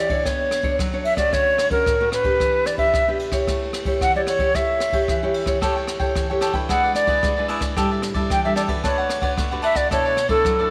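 This short excerpt from a longer piece sits in a moderate echo chamber reverb with a lingering tail, giving a polished, roomy sound to a joyful, playful blend of samba and choro at 112 BPM in a straight 4/4. A hollow concert flute carries the melody up front and close-miked, its crisp attack and vibrato touched by a slapback echo as it moves between A4 and G5. Beneath it, a deep, fingerpicked nylon-string guitar supplies warm accompaniment through chords such as Bm9, Dmaj7, Em7 and A7, while a jazz brush drum kit adds boomy kick, dark cymbals and rim clicks in an airy studio room. At 5.6 seconds a bright, picked cavaquinho joins with crisp accompaniment, filling out the harmony as the progression passes through E7/G#, A7sus4 and D6/A before landing on Bm11.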